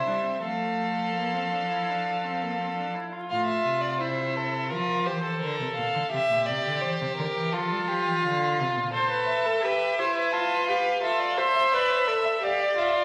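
Lively and joyful, this excerpt from a longer piece is a baroque-style fugue for string quartet in F major, moving at 85 BPM in a straight 4/4 and tuned slightly high with A at 445 Hz. A rich first violin carries the melody across a range of F4 to A5, singing with vibrato, expressive portamento and a close presence, while a clear, up-front second violin traces a smooth, even second line between E4 and E5. The viola, bowed with vibrato and sliding expressively, adds accompaniment that drops out at 3.3 seconds and returns at 8.9 seconds, sounding distant yet up front. Beneath them a smooth, even cello holds the bass from A2 to G3 until 8.9 seconds, its tone close and full. Harmonies pass from F through a rootless Gm7, C7 and back to F before ending on C and Dm7/F. The quartet sits in a wet recital hall with a 1.3-second reverb tail, and a layer of vinyl crackle gives the sound an aged patina.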